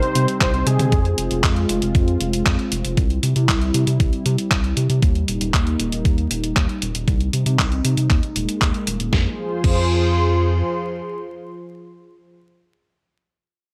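A smooth, warbling analog pad with chorus and a filter sweep carries sustained chords through this melodramatic, nostalgic italo disco excerpt until 12.3 s, over a round, deep analog bass, a thumpy electronic kick and a sampler-style detuned 8-bit drum machine with crash, handclaps, hi-hat, snare and toms, while a thick, nasal unison lead with delay and vibrato and background stabs from a dark baby grand piano sound only in the first 1.4 s, set in light reverb with vinyl crackle.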